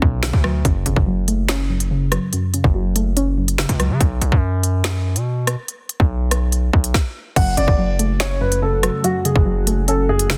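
A distorted, saturated 808-style bass drives this tense, cold drill excerpt in F# minor at 143 BPM with a half-time feel, alongside a produced drum kit of hard-clipped kick, woody snare, crisp hats, snaps, rim clicks and crash, while a warbly, detuned, lo-fi pluck plays accompaniment, a dark, mellow upright piano carries the melody from 7.4 seconds, and a glassy, ethereal FM pad drifts in the background from 8.1 seconds, all in a dry, dense, heavily limited mix.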